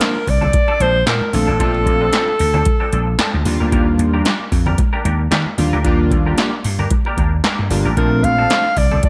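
A glossy, lightly reverberant mix with a digital ambience sets the stage for this smooth, danceable early-eighties boogie funk, cut from a longer piece and riding a gentle sixteenth-note swing. Up front, a breathy alto saxophone with vibrato and a jazz-style subtone carries the melody for the first 3.5 seconds and returns at 8.0 seconds, over a chorused polysynth whose mellow, full-bodied pulse and sawtooth tones, filter sweep and sub octave sustain the harmony until 8.6 seconds. A vintage slap bass, growly and punchy, enters at 0.3 seconds and sits up front beside an electronic analog drum machine with a deep kick, punchy snare, metallic hats and handclaps, tape-tinged and re-recorded in a large room. Alongside them, a clean, compressed semi-hollow electric guitar plays a fingered riff through analog chorus, while bright, thin-skinned congas played with soft hands add close, dry percussion in the background. 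The harmony moves from Bbmaj9 to Ebmaj7 and back to Bbmaj9, giving the groove a plush, easygoing lift.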